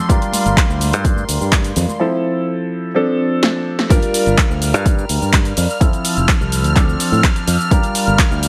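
An overdriven electronic kick and a dry analog drum machine of punchy snare, handclaps, hi-hat and cabasa drive this sensual, funky filtered disco house cut at 126 BPM in G dorian, alongside a growly fingered electric bass, a worn baby grand piano pumping through phaser and low-pass filter, lush bowed strings with 12-bit sampler grit in the background, and very quiet egg shaker and congas that stop at 2.0 seconds, before a drum fill and band accent lead into the drop at 3.9 seconds over Gm7, Fmaj7 and Dm7 chords.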